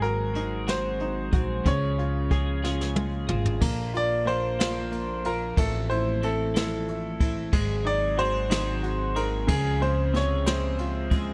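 Heard in a studio room with a softened top end, this excerpt is a romantic, tender pop ballad in six-eight, moving through rich seventh chords such as Ab7, Dbmaj7 and Bbmaj7. Up front, a clear, polished concert grand piano with deep bass and audible action noise carries the melody, its notes trailed by tape echo. Beneath it, an upright piano with a brilliant, worn and slightly detuned character plays the accompaniment. A clean, twangy twelve-string electric guitar, compressed and treated with analog chorus, picks arpeggios, while a woody pizzicato upright bass on steel strings anchors the low end. A jazz kit played with brushes, with dark cymbals, a medium-tuned snare and a boomy kick, keeps time and plays a fill from 2.6 s that leads into a new section at 3.6 s.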